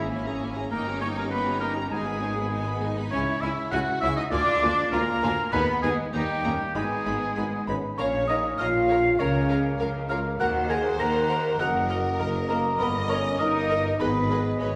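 A magical, quirky cinematic passage at 100 BPM in 2/4 opens in G# minor with a lush, vibrato-rich violin section carrying the melody over a second violin line, an airy flute, a softly attacked oboe, a distant viola section, mellow French horns holding chords, and a bass of tuba, smooth cellos and expressive double basses. At 8.0 seconds the music shifts to Bb minor as a bassoon joins the accompaniment, while a delicate, bell-like celesta joins the melody from 7.7 seconds. The ensemble sits in a reverberant recital-hall space, and the passage is cut from a longer piece.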